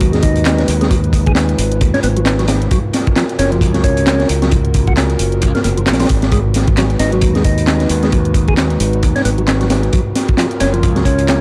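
This energetic, swaggering breakbeat piece opens with every part at once, riding a 133 BPM groove in 4/4 with a 58% swing on the sixteenths. Up front, a crunchy breakbeat kit of kick, snare and hi-hat sounds saturated and dusky, with a tight kick, a high-tuned snare and a rolled-off top, while a quieter, layered electronic garage kit adds handclaps and hi-hat with a tape-warm character. A bright, punchy fingered electric bass sits close and direct beneath, and a mellow, round tonewheel organ plays a percussive riff through a slow rotary speaker, 12-bit sampler grit and analog delay. A deep, moody analog pad holds sustained chords of detuned square and sawtooth tones with a sub octave, chorus, a slow attack and sidechain pumping. The harmony moves between G#m7 and F#maj7 in G# dorian, tuned to A4 = 439 Hz, and this dry, gritty hardware recording carries vinyl crackle across its 11.4 seconds, cut from a longer piece.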